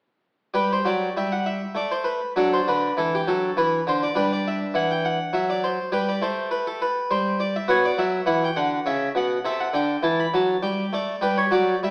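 In a rubato 3/4 at 101 BPM, this radiant, dance-like baroque-style suite movement in G major unfolds as a short cut from a longer piece, played by a solo harpsichord from 0.5 to 11.9 seconds. The up-front harpsichord sounds airy, brilliant and plucked in the French style, its octave strings ringing across a range from B2 to B5 as the harmony moves from an opening Cmaj9#11 over F# through D, G and B minor before settling back on G. A wet recital hall reverb surrounds the playing, and the whole is filtered through an AM radio sound.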